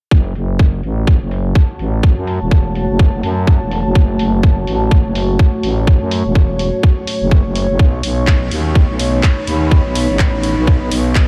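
A tight, tape-warm electronic kick sits up front in this bouncy, aggressive bass house excerpt, sounding as if re-recorded in a large room and driving the swung 4/4 groove from the very start. Beside it, a growling FM bass, thick and fast in its attack, holds sustained low notes and pumps with sidechain compression. A garage drum kit adds handclaps and hi-hats from 0.4 s, with low-pass filtering dulling its hats and snare. An airy, breathy pad with a noise layer drifts in at 1.0 s through chorus and phaser. At 2.4 s a deep, moody pad of detuned sawtooth unison with a sub octave settles into the background, its sustained chords carrying 12-bit sampler grit, chorus and reverb as they pump with the sidechain. The harmony rests on F# minor before shifting to B add 9 late in the passage, and the mix sits in light reverb and a digital ambience.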